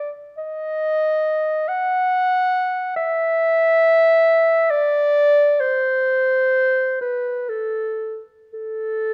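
A mellow, smooth-topped clarinet sings alone and up front in a lonely, mournful classical passage, moving in free, rubato 3/4 between about 52 and 72 BPM in the span from A4 to F#5, with a moderate recital-hall reverb and a dark production lending a lingering glow to this 9.1-second fragment cut from a longer piece.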